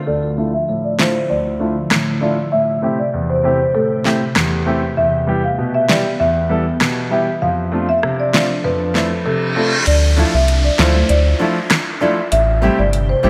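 A dreamy, reverb-soaked mix carries this sultry, tough dancehall excerpt in D dorian at 98 BPM, with a glassy FM pad holding sustained chords under a woody marimba melody and an intimate grand piano whose action noise is audible, while a filter sweep runs through the opening. A fat-snared pop drum kit with metallic hats enters at 1.0 seconds, and a reverse cymbal and downlifter lead into the second section at 9.9 seconds, where the kick is muted and a deep, round analog bass arrives up front. At 10.2 seconds a fingerpicked nylon-string guitar adds arpeggios touched with subtle chorus.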